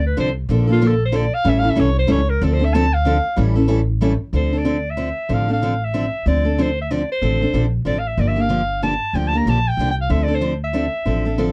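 A bright clarinet leads this short cut from a longer acoustic string swing piece, playing a forceful, punchy jazz-style solo with vibrato from 0.0 to 4.3 seconds that sits up front yet carries a roomy, distant air. The tempo is a brisk 188 BPM in 3/4, with a swung eighth-note feel and a swinging, virtuosic mood in D minor. The upright bass plays pizzicato on gut strings throughout, giving a woody, thumpy low end. A picked steel-string acoustic guitar of the parlour type enters at 0.2 seconds, its fresh strings adding a warm accompaniment. The harmony moves from Dm7 through Bbmaj7 and A7#9 in the opening part, then settles into Dm9 and Gm9 from 4.3 seconds on, all captured in a dry, close 1970s-style studio sound.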